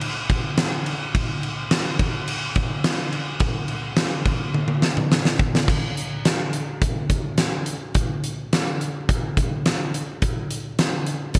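Menacing and aggressive, this short rock passage moves at 106 BPM in a straight 4/4 and is cut from a longer piece. A huge arena drum kit carries the entire 11.4 seconds, its acoustic sound set up front with a punchy kick, a fat snare, a crash cymbal, hi-hat and toms. Gated reverb gives the kit a big-room sense of scale, while a light overall reverb surrounds it. The first section gives way to a second at 5.7 seconds, just as a drum fill that begins at 4.6 seconds comes to a close. The bright 1980s-style digital production is dusted with vinyl crackle, lending a gritty edge to the polished drum sound.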